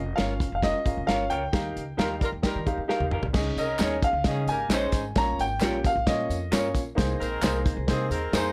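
Driven by a straight 4/4 pulse at 132 BPM, this short cut from a longer uptempo 1960s-style soul piece feels danceable and joyful from the first beat. A clear, vintage grand piano carries the melody from the start until about 6.7 s, over a woody, thumpy upright bass with gut strings and a mid-forward acoustic drum kit with a tight kick, medium-tuned snare and rolled-off top that sits up front, adding crash, hi-hat and toms. An intimate upright piano with audible action noise fills in the accompaniment, while an electric guitar through a small old amp, slightly broken-up and lo-fi with a subtle chorus, plays stabs. A pop-style horn section with light vibrato enters at 2.0 s on a second line, the band hits accents that close with a drum fill, and at 3.4 s saturated maracas and group handclaps join in the background as the harmony moves from Bbm/F and Ebadd9 to Dbsus2. Near the end a smooth, very quiet tonewheel organ with a slow rotary speaker adds sustained chords over Abadd9, all held together by a moderate small-room reverb.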